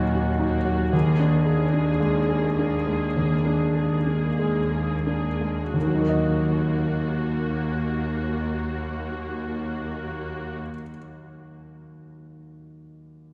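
Passionate and tragic, this classical excerpt moves with a free, rubato feel and slows through its first 5.8 seconds. An intimate, up-front grand piano carries the melody, its action noise audible, over a lush, distant viola section and an intense cello section holding a low bass; both string sections fall away at 10.6 seconds, leaving the piano alone until 13.3 seconds. A long cathedral reverb gives the sound the spacious air of a church or concert hall.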